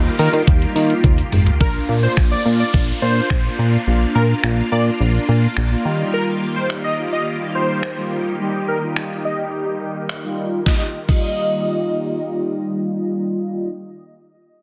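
A straight 4/4 groove at 106 BPM drives this summery, upbeat dance-pop excerpt in Eb major, where an overdriven, up-front pop drum kit with a knocking kick, deep snare, finger snaps and shaker plays until 11.2 s, a glossy retro synth bass pumps beneath it until 6.0 s, mellow synth brass and a shimmering vintage string machine hold pumping, filtered chords over an Ebadd9 and Bb progression, a thick, bold unison lead with vibrato carries the melody through dub echo, and an electronic downlifter sounds during a long filter sweep in a dense, heavily limited mix.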